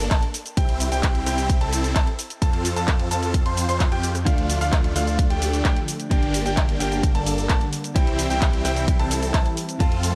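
Festival progressive house at 130 BPM, euphoric and emotional, built on a punchy, up-front electronic kick and a house kit of handclaps, bright hi-hats, rim click and shaker, while a thick, chorused detuned saw bass and a huge, phased supersaw riff pump against the sidechain over a Gm, C, F, Dm progression. High above, a brilliant baby grand piano plays arpeggios with audible action noise, vintage 12-bit sampler grit and dub echo. At 4.3 seconds a clean, direct-recorded electric guitar enters in the background with phaser and dub echo, all in a dry, close-sounding mix cut from a longer piece.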